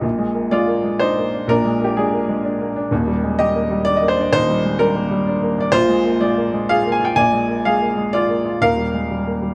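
Set in a lilting 3/4 at 126 BPM, the rhythm breathes with a rubato feel, pushing and pulling gently rather than holding a strict pulse. This is a brief excerpt of neoclassical minimalist piano, intimate and quietly hopeful in mood, with the instrument tuned slightly low to A4 = 438 Hz. A solo baby grand carries everything, its tone clear and natural, placed up front with a short sustain, and it ranges from a deep Eb1 up to Ab5. The harmony sways between Bb7 and Ebmaj7 before settling on Eb at 8.6 seconds, giving a sense of gentle arrival. Light reverb and a dark, warm production surround the piano.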